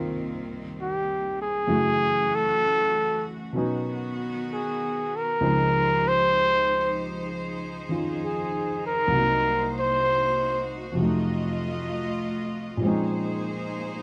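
Wistful and melancholic, this slow jazz ballad at 65 BPM moves with a gentle swing through rich extended chords, from Cm7 to a closing Bbm11, in a fragment cut from a longer piece. A dark, mellow baby grand piano sits up front with accompaniment, while a warm cello section holds soft-edged sustained chords, bowed sul tasto with light vibrato for an intimate, close feel. A breathy trumpet enters at 0.8 seconds with a smooth-topped solo melody full of scooped notes and lingers until 10.7 seconds, all framed by moderate studio reverb and detailed close miking.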